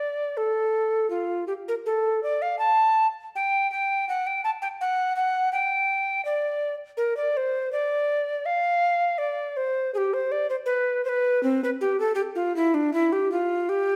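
A lone tenor recorder sounds from the start, woody and airy with a crisp, chiffy attack and vibrato, placed up front in a baroque-style fantasia of grave, flowing character. Its mellow line moves with rubato freedom in four, carried by a wet recital-hall reverb that lingers behind each phrase. This 14-second excerpt is cut from a longer piece.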